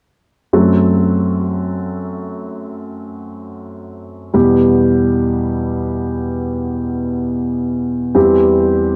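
An upright piano opens at 0.5 seconds on a diminished chord, its tone woody and open with a long sustain that lets each chord ring out. This short pop excerpt, taken from a longer piece, feels heartbroken and deeply emotional. The piano is the sole part, playing an accompaniment role that spans from low bass notes up into the middle register. It moves to E minor at 4.3 seconds and settles on C over E at 8.2 seconds. Sitting up front in a dark, warm production, the piano is bathed in a moderate plate reverb whose lingering tail adds to the sense of longing.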